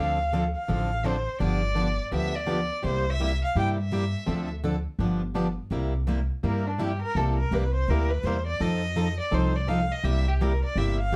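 Lively and swinging, this short cut of acoustic gypsy-jazz string swing sets a rich, bowed violin melody with smooth vibrato, turning into a solo from 5.7 s, over a boxy plugged-in swing guitar, a bright jumbo steel-string guitar set in the background, and a woody, thumpy pizzicato upright bass with gut strings, all in a dark production with light reverb.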